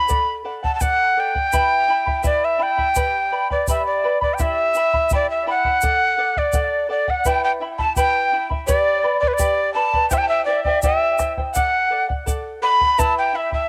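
Andean folk in a melancholic, wistful mood, this short home-recorded cassette excerpt sets a breathy, unsteady cane quena up front with a crisp chiff and analog delay over a shimmering fingerpicked charango, a round, dry bombo and a grainy egg shaker, while a distant, very quiet bamboo pan flute enters at 5.1 seconds with an expressive tongued second line, all in light reverb.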